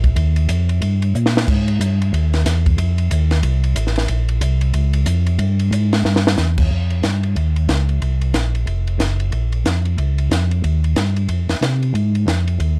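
A mellow tonewheel organ carries the bass line up front, its round, lightly overdriven tone coloured by chorus vibrato, audible key click and a slow rotary speaker, moving between F1 and C3. This short cut from a longer soul jazz organ trio piece sits in F minor at a brisk 183 BPM in 4/4, swung on the eighth notes, with a bluesy, late-night mood. A compact cocktail drum kit sits up front beside it, acoustic and dry, with dark cymbals, a high-tuned snare and a punchy kick, drawing on crash, hi-hat, ride, snare and kick. The drums play fills at 1.1 seconds and again at 6.1 seconds, the second one near where the music moves into a new section at 6.7 seconds. The production is dark and warm, with little reverb.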